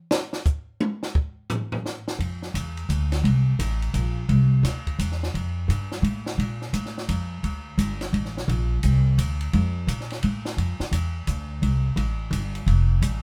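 A lightly reverberant sound frames this spiritual, hypnotic modal jazz excerpt in F major at 172 BPM in a swung 3/4, where a dry compact cocktail drum kit with dark cymbals, a high-tuned snare and a punchy kick plays alone until 2.2 seconds, when a woody, thumpy pizzicato upright bass enters up front and carries on to the end.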